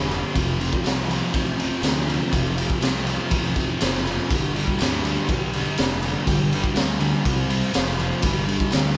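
Swaggering and menacing, this 9-second fragment of straight 4/4 garage rock at 122 BPM sets a double-tracked, picked fuzz guitar riff up front over a punchy, overdriven fingered bass, while a gritty, saturated drum kit with a high-tuned snare, punchy kick and ride cymbal rings through a bright stone room with a rolled-off top, and a faint, jingly tambourine sits distant in the background, the band captured live in one room with light reverb as the chords move from F to G5, C5, F5 and back to G5.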